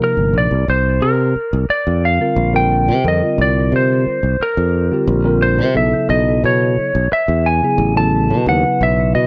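A lightly driven lead guitar, twangy and slightly broken-up, carries the melody from the start over a clean tine electric piano heard through its built-in speakers, both set in plate reverb, as a growly, up-front fingered electric bass joins at 0.2 seconds. This funky, nocturnal slice of electric jazz fusion moves at a straight 88 BPM in 4/4, drifting from Cm9 to C9sus4 and then down to B9sus4 at 5.8 seconds. A moderate club ambience and a dark production frame the compressed guitar and the bright, direct bass.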